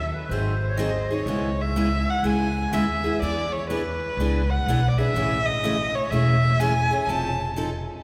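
Charming and swinging, this short cut from a longer acoustic jazz manouche piece in C# minor at 124 BPM sets a dark, nasal bowed violin melody with vibrato and portamento up front over thumpy pizzicato gut-string upright bass and a bright picked steel-string acoustic guitar with finger squeak, while a reedy, sweet accordion with light tremolo tuning hovers in the background only until 1.2 seconds, all bathed in a wet church reverb as the chords move through C#m7, E7 and Amaj7 before landing on F7.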